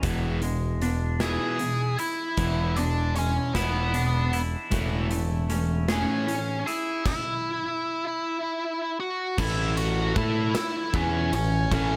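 The recording has a full, roomy studio sound, with the drum kit ringing in a bright stone room and the bass and lead guitar placed up front. This anthemic, bittersweet fragment of quiet-loud alternative rock, cut from a longer piece, moves at 51 BPM in a slow 6/8 in A major. A clean, twangy electric guitar plays arpeggios through a lush chorus until 7.1 s, while a dark, double-tracked overdriven guitar drives a riff and a growling, round, punchy electric bass adds weight. The acoustic kit brings bright cymbals and a medium-tuned snare, and from 1.2 s an octave-fuzz lead guitar sings a dark, distorted melody. The harmony moves from E7 to Amaj7/E and then Esus2, and a stop at 7.1 s gives way to a final push onto A chords.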